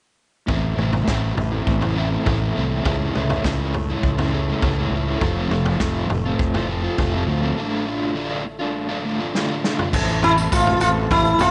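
A straight 4/4 pulse at 102 BPM drives this dark, hypnotic psychedelic rock passage in A minor, cut from a longer piece. A vintage drum kit plays crash, toms, kick and snare, with a punchy kick and medium-tuned snare caught naturally in a small room. Beside it sit a round, overdriven fuzz fingered electric bass and a crunchy, double-tracked guitar riff, bright, picked and up front with tremolo, as the chords move through Am, C#m, F and Dm. From 2.2 seconds a very quiet, detuned organ-like drone of sine tones hums beneath with a slow attack and long release, and a drum fill leads into the next section. At 9.9 seconds the harmony returns to Am as a reedy combo organ adds sustained chords with heavy vibrato in the background, joined by a jingly tambourine. A buzzing, shimmering sitar enters up front at 10.2 seconds, plectrum-plucked with sympathetic strings and tape echo, and the mix carries a light studio reverb with a softened top end.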